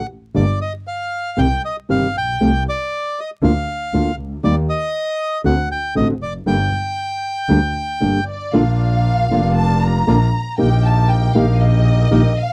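Rubato 4/4 at around 118 BPM gives this sultry, dramatic tango fragment its elastic pulse, with a dark, reedy bandoneon singing the G minor melody up front while a clear, bowed double bass with vibrato and a thumb-plucked acoustic flamenco guitar carry the harmony underneath. At 8.5 s the music turns to Bb major as a lush symphonic violin section with a smooth top takes a solo, supported by soft bandoneon stabs until the end at 12.5 s. The sound is a dry, close 1970s-style studio recording with vinyl crackle.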